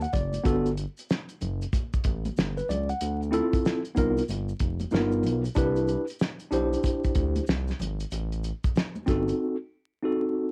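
Loosely swung sixteenths in 4/4 carry this warm, smooth jazz-hop excerpt, where a cloth-damped, thuddy acoustic kit with a fat snare and tight kick sits up front beside a mellow, sustained synth bass, while ringing, compressed maracas and congas stay in the background. A worn, slightly out-of-tune tine electric piano, colored by cassette tape, opens with a brief fill and then voices lush chords from Gmaj9 through Dm9, G7alt and Cmaj9. The drums drop out at 9.4 s, leaving the piano to ring on a Cdim7 until 10.5 s, all wrapped in light reverb and vinyl crackle for a homespun feel.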